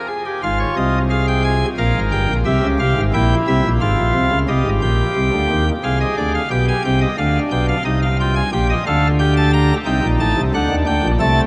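Solemn and driving, this brief excerpt from a baroque-style three-part fugue for pipe organ moves at 89 BPM in 3/4. A nasal cornet solo stop, with its crisp chiff and up-front presence, spans from a deep low register to a bright upper register, shifting from F minor to C minor at 4.5 seconds, all bathed in the long, echoing reverb of a vast space.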